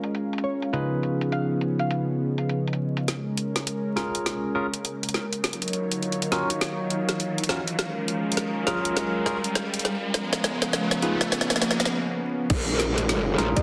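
A swaggering, funky glitch hop excerpt opens with a smooth, detuned analog pad and stabs from a barky tine electric piano, both under a filter sweep, over an up-front drum kit with bright hats, a woody snare, shaker and crash. A deep, moody ambient pad hovers in the background, and a dark, wave-folded pluck sounds a brief melody. From 3.1 s the track builds with a drum fill, joined at 4.1 s by an electronic riser, both running until 11.9 s. Then at 12.5 s the drop lands with a tight electronic kick and an aggressive, growling, wobbling bass as the pluck returns over vinyl crackle and a dense, heavily limited master.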